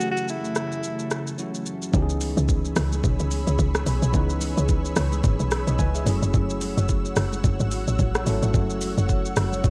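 A woody, punchy log drum bass drives this late-night, soulful amapiano cut from a longer piece, arriving up front at the drop at 1.9 seconds with a fast attack and a percussive, decaying tone. Before that, a clear alto saxophone with light vibrato and a soft subtone sings a brief solo phrase with tape echo, finishing by 1.4 seconds. Throughout, a bell-like tine electric piano adds bright, clean accompaniment over an ethereal, airy pad whose slow-attack, sustained chords carry ensemble chorus, built-in reverb and sidechain pumping. A smooth, electronic R&B drum kit sits up front in a swung 4/4 at 109 BPM, with a knocking kick, metallic hi-hats, rim click and shaker, while very quiet, ringing congas join at the drop. The harmony moves between F#m7 and C#m7 in C# minor, and the dry mix has the hazy character of a home cassette recording.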